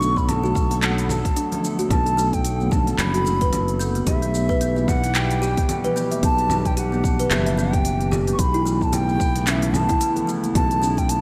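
A pure, bamboo-toned bansuri carries the melody with vibrato and analog delay through this mystical, dreamy slice of organic downtempo, swung gently on the sixteenths. Beneath it, a woody kalimba rings out delayed arpeggios, while a warbling, nostalgic tape-like pad holds detuned chords in the background and pumps from the sidechain alongside a growly fretless bass with tube saturation. An overdriven, deep electronic kick arrives at 0.2 s and distant, very quiet congas at 0.4 s, joining a crisp-hatted electronic kit of handclaps, shaker and congas, with the whole mix soaked in plate reverb.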